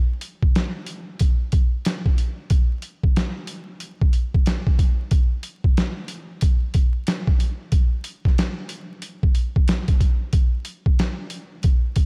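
A gritty, compressed, pitched-down boom bap drum kit sits up front from 0.2 s with a thumpy kick, a medium-tuned snare and hi-hat, driving this soulful, nostalgic hip hop clip at 92 BPM in 4/4 with a 63% swing on the sixteenths, wrapped in light reverb and vinyl crackle, before the groove shifts into a new section at 10.3 s and the clip cuts off at 12.1 s.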